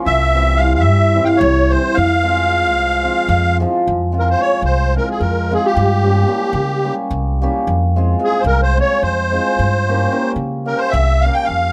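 In a straight 7/8, this restless, virtuosic Balkan wedding-band snippet puts a reedy, shimmering musette accordion up front over a bright, ringing hammered cimbalom and a woody, growly pizzicato upright bass, with the accordion taking a solo from 3.9 s as the chords move through C, Fm and Gdim in light reverb.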